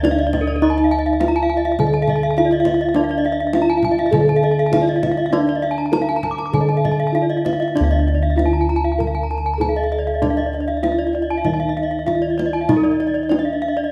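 Round, up-front bronze bossed gongs carry the bass beneath a brilliant, ceremonial Balinese gamelan excerpt in D pelog at 99 BPM in 4/4 with uneven beats, shifting into a new section at 7.8 seconds. A mellow bronze metallophone played with padded disc mallets, with a boxy small-room color, takes the melody. Two more metallophones struck with horn mallets add arpeggios above it, one dark and smooth, the other bright, and the paired tuning of all three metallophones gives them shimmering beats, while a tight, band-limited kendang with a vintage tone keeps the percussion inside a moderate recital-hall reverb.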